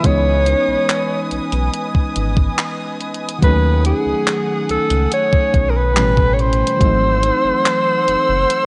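An up-front alto saxophone with vibrato carries a sensual, late-night melody in this contemporary R&B excerpt in C# minor at 71 BPM, its punchy tone trailed by tape echo over a chorused FM electric piano, dark bowed strings, a round, deep analog bass and a thumpy 12-bit drum machine of kick, hi-hat and handclaps, all wrapped in light reverb and a worn, warbling cassette sound as the chords move from C#m9 through D#m7b5 and A9 to G#7b9b13.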